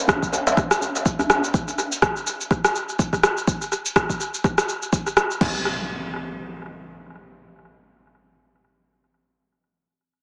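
An echo-heavy mix with a wet spring reverb and a small-speaker sound frames this short afro house excerpt, spiritual and hypnotic at 124 BPM with a swung sixteenth-note feel. A deep, layered electronic kick and a tape-toned deep house kit of crash cymbal, rim click and shaker sit up front, the kit carrying tape echo, joined at the start by a warm, deep acoustic djembe, hard-handed and roomy, which drops out at 1.4 seconds. The drums stop at 5.5 seconds as a forward electronic impact takes over into the second section.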